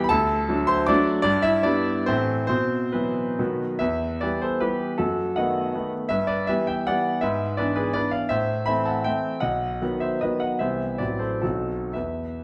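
Nostalgic and wistful, this short excerpt of a romantic classical triple-time dance in E minor moves in 3/4 with dotted rhythms and a free rubato feel, its tempo drifting between 109 and 179 BPM. A solo concert grand piano, clear and intimate with deep bass, long sustain and audible action noise, sits up front in a wet recital hall reverb, tuned slightly low to A4 = 435 Hz. After an opening phrase, a new section begins at 3.8 seconds and moves through seventh and half-diminished harmonies before arriving on a B7b9 dominant near 11.4 seconds.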